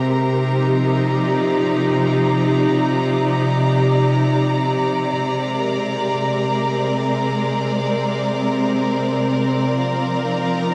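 A clear, lush symphonic string section opens this serene ambient fragment with smooth, up-front sustained chords drifting from Ebmaj9/C to Bb9/C, while a quieter chamber violin section adds an intimate, soft-attack sul tasto texture high above. At 9.7 s, as the harmony settles on Cm11, a breathy, flute-like synth lead enters far in the background with a single chorused, vibrato-tinged note. The strings and violins sit in the vast, echoing space of a cathedral reverb that gives the piece its spacious, unhurried feel.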